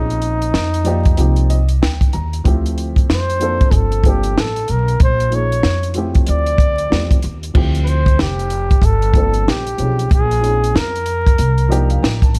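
This jazz-hop cut, taken from a longer piece, carries a cool, nocturnal mood over a swung hip hop groove. A breathy flugelhorn leads the melody in a whispered, intimate jazz style, its soft attacks, scooped notes and vibrato giving the solo line a hushed, late-night quality. Beneath it, a dark upright piano supplies mellow, woody chords with short sustain and audible action noise for a vintage feel, stepping forward with brief fills at 1.2 seconds and again at 11.4 seconds. The upright bass is plucked on gut strings, thumpy and up front, while a compact cocktail drum kit enters at 0.1 seconds with a punchy kick, a high-tuned snare, hi-hat and dark crash cymbals, all dry and close. A small room ambience and a layer of vinyl crackle wrap the ensemble in a worn, smoky atmosphere.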